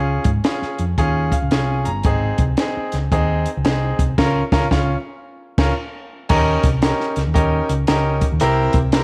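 A clear, intimate baby grand piano sits up front in this short, warm and danceable slice of uptempo 1960s-style soul at 113 BPM, swung in Eb mixolydian, its long sustain and audible action noise coming through as it plays a fill from 1.0 to 2.1 seconds. A round, hollow-body picked electric bass with a dark, amped tone carries the low end, while a compact cocktail drum kit enters at 0.2 seconds with a punchy kick, high-tuned snare, hi-hat and crash, its smooth, rolled-off top also placed up front. The band hits an accent from 4.2 to 6.3 seconds as the chords move from Db and Ab through Db6 to Eb7 and C7, heard in a small room with light reverb.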